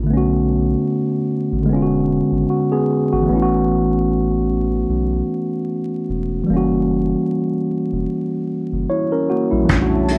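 Nostalgic and hazy, this lo-fi hip hop excerpt at 75 BPM in a swung 4/4 sets a mellow, cassette-tinted tine electric piano up front over a deep, round dub sub bass through Bm9, E13, A69 and F#7b9, with a tight-kicked brush kit of hi-hat and kick entering at 9.7 s and a dark, detuned, warbling pad with chorus, phaser and its own reverb arriving at 9.9 s, all set in a moderate studio reverb under a layer of vinyl crackle.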